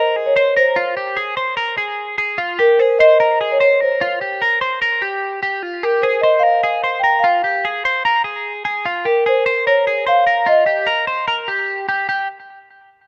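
A mellow, round marimba played with soft mallets carries the melody from the start while a bright, twangy twelve-string electric guitar picks clean, compressed arpeggios through delay, both up front in a rough, small-room home demo of breezy indie pop at 148 BPM, moving from Fmadd11 and Fsus24 to Fm and Eb before the marimba stops at 11.6 seconds and the guitar at 12.3 seconds in this short cut from a longer piece.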